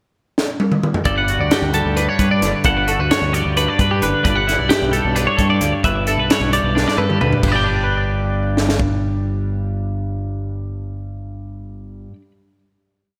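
Intricate and wistful, this short math rock and midwest emo piece moves in a quick 7/8 at 264 BPM in G major, with a crisp fusion drum kit whose high-tuned snare and tight kick open with a fill at 0.4 seconds before two bright, twangy twelve-string electric guitars enter at 1.1 seconds, one picking a clean, compressed ostinato accompaniment with subtle chorus and slapback echo and the other playing syncopated fingerstyle arpeggios through digital delay, while a growling overdriven fingered bass holds a syncopated riff beneath Gmaj7 and Em7/G chords, the drums stopping at 8.9 seconds as a final G chord rings out in a lush hall reverb that gives the whole a big arena sound.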